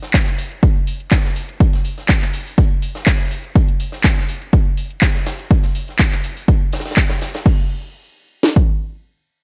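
A straight house drive comes from an overdriven, up-front house kit with a punchy kick and cracking snare running to 8.7 seconds, layered with a second overdriven kit of metallic hats, handclaps and crash cymbal, and a lower natural, big-room acoustic rock kit adding filtered hi-hat and medium-tuned snare until 7.5 seconds, all giving this euphoric, uplifting piano house excerpt a dry, bright 1980s-style digital sheen.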